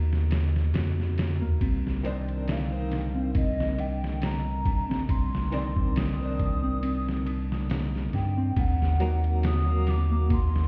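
Celtic harp arpeggios with tape echo and a deep, round sine sub bass open this cinematic, smoky trip hop excerpt in C minor at 69 BPM, joined at 0.1 seconds by a gritty, pitched-down sampler-style kit with a thumpy kick and medium-tuned snare, both bass and drums sitting up front over a lightly swung 16th-note feel. A brilliant, airy harpsichord with tremolo and echo enters at 2.0 seconds, and at 2.5 seconds a pure, close-miked baroque flute carries the expressive, vibrato-laden melody through vintage 12-bit sampler grit. The harmony moves from Ebm to a long Cmadd9 before returning to Ebm, and the whole mix sounds muffled through a wall with stone room reverb.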